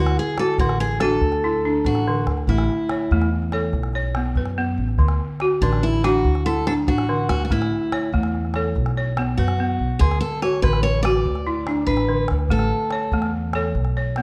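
Picked steel-string acoustic guitar melody with audible finger squeak, buzzing woody balafon arpeggios struck with hard rubber mallets, and up-front pizzicato upright bass open together as a deep calabash joins, forming a joyful, warm West African traditional piece in D major at 96 BPM in a straight 12/8, cycling through D, A and B5 in a dark recital-hall reverb until the guitar drops out at 13.3 seconds, just before this excerpt ends.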